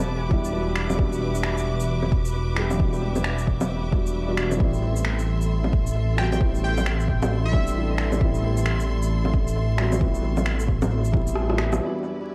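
A melancholic, wistful future garage excerpt at 133 BPM in swung 4/4 opens on a soft, felt-muted upright piano with 12-bit sampler grit and tape echo, clear bowed strings and a dark, rumbling detuned saw bass, all pumping against an overdriven deep kick and a layered kit of shaker, finger snaps, bongos and rim click with dub echo, moving from Em7 to Am7 while a punchy, catchy plucky lead with analog delay surfaces at 6.2 seconds and a drum fill at 11.4 seconds closes the passage in an echo-heavy mix with spring reverb and vinyl crackle.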